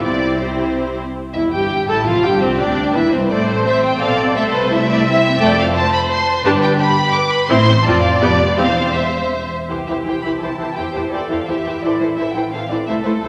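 Rich, vibrato-laden violins carry the melody up front in this cheerful, graceful excerpt of a quick classical-period movement for string orchestra at 170 BPM in 3/4 and C major, played with a rubato feel, while a soft-attack second violin line, lush up-front violas, smooth cellos in the background and expressive double basses fill out the harmony inside a wet concert-hall reverb.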